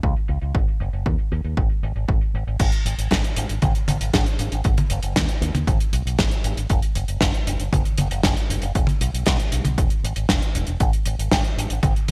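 A nostalgic, danceable slice of italo disco, cut from a longer piece, moves in a straight 4/4 feel built entirely from rhythm section parts. A fingered electric bass runs through an envelope filter, sounding bright and direct, sitting up front in the mix for the whole 12.1 seconds. Alongside it, a damped 70s drum kit brings a medium-tuned snare, hi-hat, toms and crash cymbal, its dry, rolled-off character shaped by low-pass filtering and a gated reverb. An electronic kick drum, punchy, layered and tape-tinged, plays until 11.9 seconds. The production is bright and digital in a 1980s manner with little room sound, and after an opening passage the groove shifts into a new section at 2.6 seconds.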